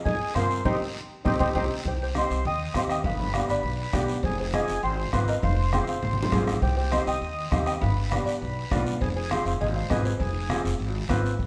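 A driving, straight 4/4 cumbia groove carries this passionate Latin clip, built on a woody, up-front pizzicato upright bass, a distant soft-beater bombo, low-tuned congas in the background and a raspy, close guiro, while a buzzing, dark, round marimba played with soft mallets takes the melody over a reedy, full accordion second line and a long-sustaining upright piano, the whole band playing live in a stone room with a band accent from 0.7 to 1.9 seconds and a drum fill at 6.0 seconds.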